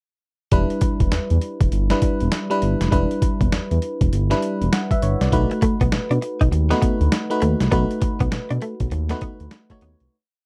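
New jack swing R&B at 100 BPM in E dorian, this whole piece struts with a confident, slick attitude over a hard-swung drum-machine beat. Gritty, pitched-down sampler drums sit up front with a thumpy kick, a medium-tuned snare and hi-hat, all pushed through overdrive. A smooth sawtooth-and-triangle synth bass with ring modulation and vibrato carries a bouncy swung synth-funk line, dotted with muted ghost notes and chromatic approach notes. A glassy, bell-like FM electric piano with chorus adds syncopated chord stabs in drop2 voicings and short fills, moving from Em7 to B7 at 5.3 seconds. At 5.5 seconds a clean, direct-recorded electric guitar enters with a muted, picked single-note line bathed in lush chorus, and the whole verse fades out from 7.7 seconds in a dry, close 1970s-style studio sound.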